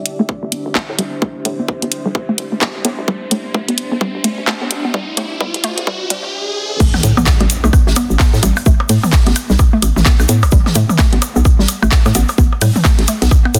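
This quirky, hypnotic minimal techno cut in A minor at 129 BPM, swung on the 16ths, opens on a hollow, knocking, bouncy FM bass and a deep, moody sawtooth pad with chorus and reverb, both carrying sidechain pumping. A tight, up-front electronic kick, a detuned square-wave pluck with tape echo and a tape-warm garage kit of handclaps, hi-hat and crash fill out the build-up, as a filter sweep and an electronic riser gather tension and the pad stops at 6.3 seconds. At 6.8 seconds the drop lands with an impact, bringing in overdriven electronic blips and toms, a grainy, bright egg shaker and an airy acoustic street-band kit of snare, hi-hat and shaker in the background, all under a dense, heavily limited master with a light studio reverb.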